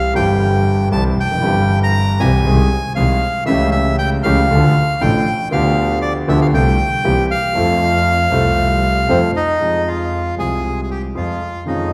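Rubato and in four, this sultry, tense tango fragment sets a reedy, bright, close-miked bandoneon melody up front over smooth, vintage-toned grand piano accompaniment and a single bowed double bass with a biting, clear tone and light vibrato, all in the resonant reverb of a recital hall, turning toward a darker minor colour at 9.6 seconds.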